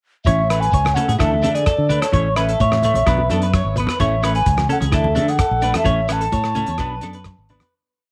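Highlife guitar band music at 129 BPM in A major, carefree and danceable, cycling through A, Dsus2 and Bm in a short complete piece that fades out from 5.9 seconds. A reedy baroque flute carries a tongued, vibrato-touched motif melody over a round, syncopated fingered bass riff, while one clean electric guitar strums upper chord shapes and a second plays a bright, twangy arpeggiated ostinato colored by phaser and tape echo. A cloth-damped, thuddy drum kit with a tight, gritty kick, hi-hat and rim click drives a highlife groove. A grainy shekere sits in the background from the very start, and low-tuned, ringing congas join there at 0.8 seconds, all within a small, lightly reverberant room.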